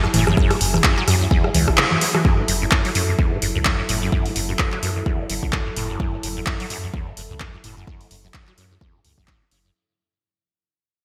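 A driving, trippy acid house cut opens on a drop, with a squelchy, resonant sawtooth acid riff sweeping its filter through phaser and tube saturation over a soft, detuned chorused pad, while a punchy, overdriven analog drum machine of congas, handclaps, hi-hat and rim click sits up front in gated reverb. A deep, round analog bass with ring modulation and a dry, overdriven electronic kick join almost at once, the two basses and the pad pumping against the sidechain, and a band accent lands at 1.8 s before a fade-out begins at 2.2 s. The swung, bright 1980s-style digital production sets the parts in a moderate plate reverb.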